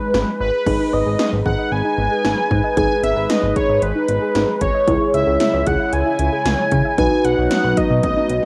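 The recording has a hazy, cassette-dubbed home character, set in a wet but short studio reverb that gives this brief cut from a longer piece a nocturnal, melancholic glow. It is a straight-feel synth-pop passage in G# minor at 114 BPM, moving from G#m to C#m at 4.9 seconds and on to B at 7.0 seconds. Up front, a bold, bright octave-doubled lead carries the melody with a filter sweep and vibrato, while a swirling, warbling analog pad holds sustained chords underneath through its phaser and chorus. A glossy, pulse-width-modulated synth bass anchors the low end, and the 80s electronic drums bring a punchy kick, metallic hats, crash, and a gated snare and toms, ending on a drum fill from 8.0 seconds. From 0.7 seconds, muted, felt-like synth keys add intimate, decaying accompaniment alongside a very quiet, round pluck playing soft arpeggios with a sub octave beneath.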